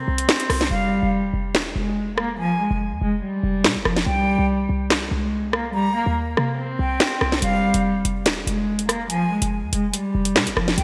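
Drill hip hop at 143 BPM in a half-time feel, this tense, menacing cut from a longer piece sits in F minor, moving through Fm and C7(no3) chords. A nasal, reedy bowed cello carries the melody through a low-pass filter and digital delay, a punchy, tight 808-style bass with a noise layer anchors the low end, and an electronic drill kit with a sharp snare, handclaps, rim click and metallic hi-hats enters at 0.2 s, its hats muted from 0.7 to 7.4 s. A breathy, unsteady concert flute with vibrato joins at 0.7 s as a second line with its own delay, all set in a lush hall reverb with bright 1980s-style digital production.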